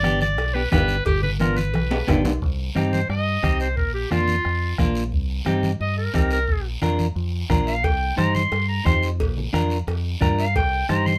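Fiery and danceable, this cumbia excerpt features a bright, vintage-toned clarinet that takes a classical-style solo from 2.4 seconds, up front beside a twangy, clean picked electric guitar and a dark, round, punchy fingered bass, while a soft-beatered bombo, damped congas in the background, a raspy close guiro, and ringing, saturated cowbell and timbales (which return at 7.8 seconds) drive the beat in a light reverb over a C minor and B-flat chord cycle.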